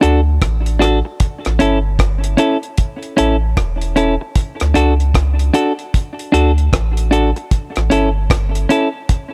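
A sunny, laid-back roots reggae groove opens with a deep drum kit, round sub bass and clean electric guitar all sounding at once, a short piece of a longer track with a lilting swung feel. The dry, dark, smooth kit, with its tight kick, rim click and hi-hat, sits up front beside a warm, sine-like bass whose fast attack gives way to long, mellow sustain. Picked, compressed guitar accompaniment trails a tape echo over the D and A changes in a small, intimate room before the guitar stops at 8.9 seconds.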